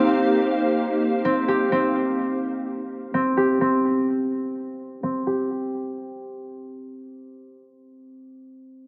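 A bright, ringing concert harp plays fingerpicked arpeggios up front for the full 8.0 seconds of this excerpt, its tone softened by a low-pass filter and trailed by tape echo. A glassy, ethereal FM pad opens with a sustained Eb69 chord, thickened by ensemble chorus and its own reverb, before dropping out at 1.7 seconds, while a filter sweep runs through the opening 5.5 seconds. Set at 127 BPM in a half-time 4/4 feel in Eb major, this floating, blissful hip hop fragment sits in a moderate digital room with a dark, warm production.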